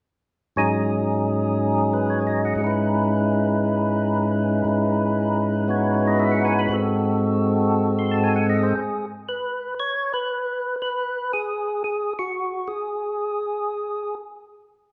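Jazz at 118 BPM in 4/4 with a swung eighth-note feel, this soulful, bluesy passage is cut from a longer piece and features a solo percussive tonewheel organ playing from 0.6 to 14.1 seconds across a span from G#2 to B#5. The organ sits up front with a fat, lightly overdriven tone, third-harmonic percussion, vibrato and a slow rotary speaker, moving through G#7sus4, C#m9/G# and G#7b9 before dropping its chords at 8.7 seconds. A wet recital-hall reverb of a church or concert hall surrounds the instrument.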